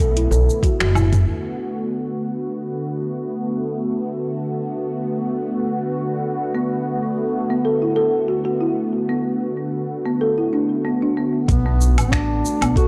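A mystical, meditative organic downtempo piece with a light swing, built on a smooth, detuned sawtooth pad with chorus and sidechain pumping that holds sustained chords up front throughout. A dark duduk with vibrato and scooped notes, a growly pizzicato upright bass with tube saturation, and a deep house kit of metallic hats, cabasa, finger snaps, toms and woodblock over a soft electronic kick open the piece with a drum fill and a faint, crisp darbuka hit before falling away. A mellow, woody soft-mallet marimba plays arpeggios with 12-bit sampler grit and tape echo in the opening moments and again from 6.5 seconds, and the full band returns at 11.5 seconds, all under light reverb with a dry, gritty cassette character.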